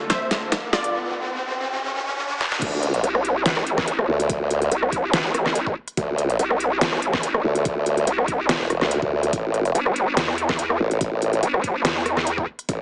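Heavy wobble dubstep at 143 BPM in D minor, menacing and chaotic, cut from a longer piece: a bright, ring-modulated unison pluck melody with cassette tape and digital delay and a faint lush supersaw pad open over a drum fill and an up-front riser, then a break gives way at 2.6 seconds to the drop, where a sawtooth formant-sweep wobble bass enters and a nasal, resonant vowel-sweep wobble bass joins at 3 seconds, both chorused and overdriven, wobbling in half-time over a deep-snared, crisp-hatted dubstep kit and an overdriven knocking kick, all squeezed into a heavily compressed, small-speaker radio sound with light reverb.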